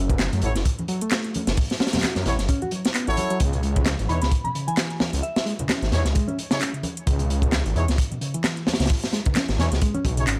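A crunchy, saturated acoustic breakbeat kit sits up front, its tight kick and medium-tuned snare carrying a gritty, rolled-off top in a studio room, while a layered electronic house kit adds handclaps and metallic hats beneath it. Equally forward, a thick, menacing detuned saw bass with a beating, sustained tone anchors this energetic, swung breaks excerpt. A reedy electric piano riff, heard as if through its built-in speakers, is thickened by tube saturation and dub echo, and a close-miked jazz-style horn section punctuates the groove with light-vibrato stabs, also trailed by dub echo. Ringing congas sit in the background, and from 4.1 to 5.4 seconds a soft, pure FM bell melody appears with chorus, a telephone-like filter and dub echo. Harmony moves from F#m7 to C#m at 3.4 seconds, and a dry mix is coated in prominent vinyl crackle.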